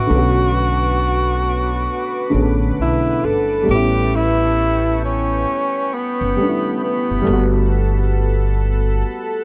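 A breathy tenor saxophone leads this dreamy, cosy lo-fi hip hop fragment at 67 BPM with a swung 16th feel, its jazz-style solo line scooping into notes with vibrato and a soft attack through plate reverb and analog delay before falling silent at 7.7 seconds. Beneath it, a worn, slightly detuned upright piano with cassette-tape colour plays accompaniment, a thumpy, woody upright bass plucks gut strings up front, and a lush, thick unison pad holds bright, chorused chords high above. The harmony moves from Bm7 to A9 to Gmaj9 in a dark, warm production with a small room ambience.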